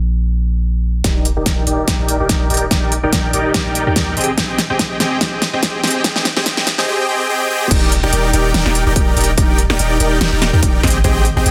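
Future bass in Eb major at 144 BPM with a half-time, lightly swung feel, this lush, euphoric cut from a longer piece opens on a deep, mellow 808-style bass alone before a huge, detuned supersaw riff with sidechain pumping and dub echo enters at 1.0 seconds alongside a punchy electronic kick and a big-room kit of huge snare, crisp hats and crash, building through a drum fill and filter sweep over Ebmaj7 and Abmaj7 chords until the drop lands at 7.7 seconds in a dense, heavily limited master.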